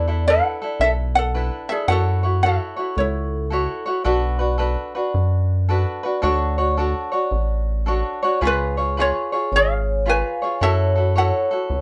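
Hawaiian tune at 110 BPM with a relaxed swing in F# minor, sunny and easygoing, with a light fingerpicked ukulele melody up front that drops out at 3.8 seconds and returns at 8.5 seconds, a bright tenor ukulele fingerpicking chords from E7sus4 through F#m7, Bm7, Dmaj7 and C#7 the whole way, a rubbery, hollow square-wave bass bouncing darkly underneath, and a mellow soft-mallet vibraphone with slow motor vibrato ringing in briefly at 3.0 seconds and again from 8.4 seconds, all heard as a band playing live together in a moderately ambient studio room.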